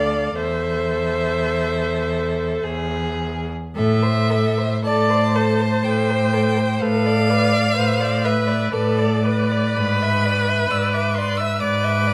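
Melancholic and elegiac, this excerpt from a longer classical work is a slow romantic movement for string quartet in A minor, moving in a rubato 3/4 at roughly 51-67 BPM. A first violin carries the melody high above the ensemble, its tone rich with vibrato and portamento, while a second violin plays a smooth, even second line beneath it. The viola fills in the accompaniment with its own expressive slides and vibrato, and all three upper voices sit at a slight distance. The cello, by contrast, is bright and focused, playing a low bass line up front. The harmony passes from Am/E through Am and Bm7b5/A before settling on E7/G# near 9.8 seconds. Close, detailed microphones catch the bowing, framed by a moderate recital-hall reverb.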